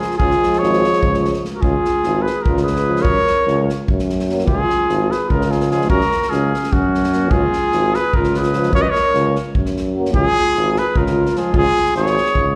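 A mellow trumpet with light vibrato carries the melody up front in this festive, wild Balkan brass band passage in 7/8, cut from a longer piece, with a vintage-toned clarinet playing a second line beneath it, both touched by slapback echo. A soft-attack trombone and a warm euphonium sit in the background on accompaniment, also with slapback echo, while a clear tuba holds the bass up front and an airy acoustic drum kit adds a punchy kick and medium-tuned snare. It sounds like a live gig heard through the venue's PA, with recital hall reverb.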